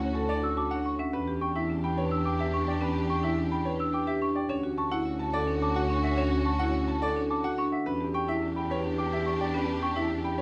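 A close-miked, dry marimba played with medium mallets leads the ear, its full-bodied arpeggios running through this hypnotic, meditative stretch of minimalist classical pattern music, cut from a longer piece. Set at 107 BPM in a straight 3/4 in E dorian, the harmony rocks between Dmaj7 and Em7, settling on Em7 at 1.1 s and returning to it at 7.9 s. A clear concert grand piano carries the melody with an open, deep-bottomed tone, while a very quiet, smooth-topped clarinet traces a modest second line beneath it. From 0.2 s a slightly out-of-tune celesta adds delicate, bell-like arpeggios in a higher register, its soft felt hammers giving a mellow, sweet shimmer. A lush, bowed violin section holds sustained chords with focused vibrato, and an up-front chamber double bass section anchors the bottom with rich, bowed low notes. A moderate large-studio reverb lends the ensemble a gentle sense of space, and the overall sound is soft and rounded at the top.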